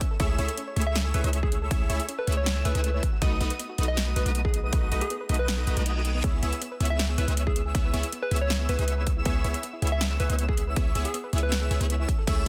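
This emotional, dreamy future bass excerpt is anchored by a punchy, up-front electronic kick and a deep, sine-toned 808-style bass that sustains long, low notes around B1 to C#2 with sidechain pumping. At 159 BPM in 4/4 with a half-time feel in C# minor, the big-room dance kit adds a punchy snare, metallic hats and crash cymbal. A detuned sawtooth supersaw stab plays a riff with a filter pluck, a moving notch, sidechain pumping and digital delay, and a keys-like, warbling FM lead carries the melody from 0.9 s with a vintage, bright, wave-folded tone, chorus and delay. In the background, a soft, nasal triangle pluck plays arpeggios under chorus, pumping and digital delay, while an airy sine lead with a noise layer and vibrato adds high arpeggios between D#6 and E6. Chords move from Amaj7/C# to B7 and then C#m7, and a reverse cymbal rises into the change as the kick drops out from 5.9 to 6.2 s. 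The mix is dry, dense and heavily limited.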